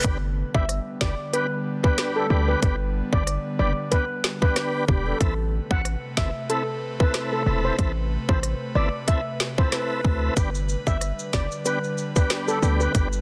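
A swung dancehall groove from a tight, electronic island pop drum kit with woody snare, smooth hats and rim click drives a punchy, heavy 808-style bass, while a shimmering, metallic steel pan carries the summery, bouncy melody through tape echo over clean tonewheel organ with key click and chorus vibrato and a breathy, detuned pad, both pumping against the beat; a hollow bamboo bansuri adds brief echoed phrases at 4.6 and 9.7 seconds, and soft acoustic maracas join at 10.4 seconds in this dense, heavily limited cut from a longer piece.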